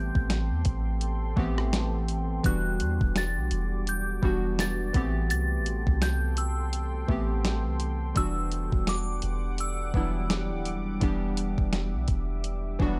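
Contemporary R&B with a longing, moody, swung feel, where a glassy FM synth bell carries a high melody through chorus, phaser, tremolo and delay over detuned analog keys, a deep sawtooth pad with slow attack and sidechain pumping, a round sine 808-style bass up front, and a crisp 8-bit drum machine with thumpy kick and gritty sampler texture entering at 0.2 seconds, all in a dry sound.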